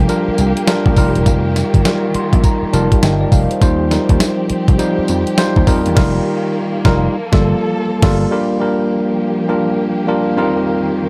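A bright, bell-like tine electric piano and dark, lush bowed strings with vibrato open this bouncy, punchy new jack swing excerpt in G minor at 102 BPM, joined at once by a punchy, amped vintage slap bass and a crisp 8-bit drum machine with a thumpy kick, fat snare, hi-hat, tambourine and crash, swung on the 16ths. The electric piano adds a fill from 1.9 to 3.6 seconds over chords moving through Gm7, F9sus4 and Eb69, and the band hits an accent before a silent gap at 7.7 seconds, after which bass and drums drop out at 8.2 seconds. Keys and strings carry on alone to the end in a dry, dark production with the piano and drums up front.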